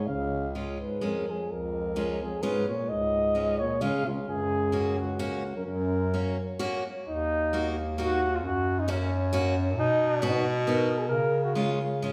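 A mellow, vibrato-laden flugelhorn opens with the festive melody, sounding distant and roomy, over a dark, smooth-topped euphonium second line and a soft-attack bass clarinet carrying the bass, while a bright, picked steel-string acoustic guitar soon joins up front. This jolly alpine dance-band folk tune moves in a lilting 3/4 at 130 BPM with a light swing and rubato, all set in a resonant concert-hall reverb. The euphonium drops out at 6.6 s, and from 7.1 s the music shifts from F# major into Eb minor for a contrasting passage before the cut.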